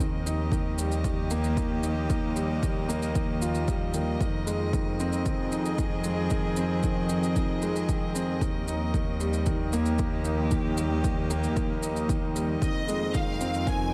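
A straight 4/4 pulse at 114 BPM drives this melancholic, moving piano-and-strings electronica, with a shaker ticking from the start and a punchy, overdriven electronic kick joining at 0.5 seconds. A clear concert grand piano sits up front playing a riff through a delay, its intimate tone carrying audible action noise, a boxy body and long sustain. Beneath it, a string quartet holds rich sustained chords with an airy sul tasto bow, while a bowed double bass section lays down an intense, bright low line, both breathing with sidechain pumping. The harmony moves between Ebadd9 and Fm7. Near the close, at 12.6 seconds, a lush, focused violin section steps forward with a vibrato melody. Light reverb and small room ambience frame this brief cut from a longer piece.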